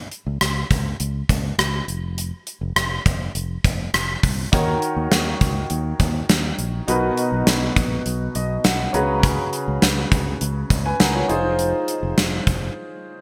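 Nostalgic yet urgent, this 1980s-style pop excerpt moves at 102 BPM in a straight 4/4, cut from a longer piece. A gated 80s drum kit drives it from the start, its punchy kick, medium-tuned snare, rim click and hi-hat sitting up front in a bright stone room with gated reverb. A dark, round fretless electric bass joins almost at once, its direct, amped tone anchoring the low end. At 4.5 seconds a concert grand piano enters, intimate and present, with audible action noise, deep bass and long sustain, bathed in a lush chorus, and it plays a fill from 8.1 seconds. The harmony passes through Ebm7, Bmaj7, Db7sus4 and Fm7 before a brief break at 12.8 seconds. A moderate plate reverb and bright digital production give the whole a polished sheen.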